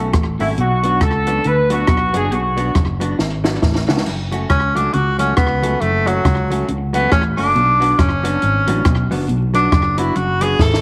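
A distant, roomy tenor saxophone solos from 4.1 s in this driving, mischievous swung ska passage at 138 BPM in F# minor, cut from a longer piece, after a tight, vintage horn section states the melody from 0.4 s, over a compact cocktail drum kit with a high-tuned snare and punchy kick, a round fingered electric bass, a dark, clean hollow-body jazz guitar with slapback echo, and a very quiet, slightly broken-up electric guitar riff, with moderate spring reverb and vinyl crackle on the recording.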